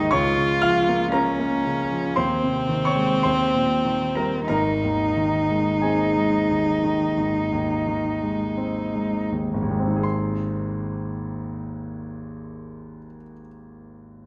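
A rich, bowed cello with smooth vibrato sings a lyrical melody over a clear, vintage-toned concert grand with deep bass in this warm romantic classical excerpt in Ab major, which moves in a rubato 4/4 at 39-61 BPM and slows through its first 10 seconds as the harmony passes from Bbm/Db to Ab/Eb, Eb and Ab, before the cello falls silent at 9.3 seconds and the piano carries on alone until 14.3 seconds, both instruments up front in a lush scoring-stage reverb.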